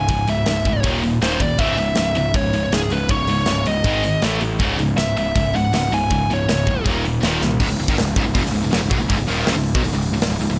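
A light reverb wraps this aggressive, relentless heavy metal excerpt, where a dark, high-gain lead guitar carries the melody up front beside a polished, airy big-room drum kit with bright cymbals and a tight kick, while two picked, distorted rhythm guitars grind out riffs in the background over a growly fuzz bass; the lead drops out at 6.8 seconds, and a drum fill at 7.4 seconds ushers in a double-tracked, overdriven guitar riff from 7.6 seconds.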